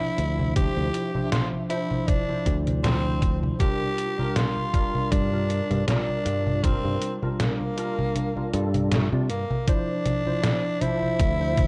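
Woozy and hazy, this vaporwave excerpt drifts at 79 BPM in D minor with a gentle sixteenth-note swing, moving from Dm9 to Gm7 and back. A raspy, gritty tenor saxophone with vibrato and tape echo carries the melody up front over a barky tine electric piano whose clean, bright chords ring through ensemble chorus, while a round, dark fingered bass with tube saturation anchors the low end. A detuned 8-bit drum machine supplies congas, hi-hat and a medium-tuned snare, joined at 0.6 seconds by a thumpy, up-front electronic kick that drops out from 8.2 to 9.7 seconds, with the mix set in light reverb.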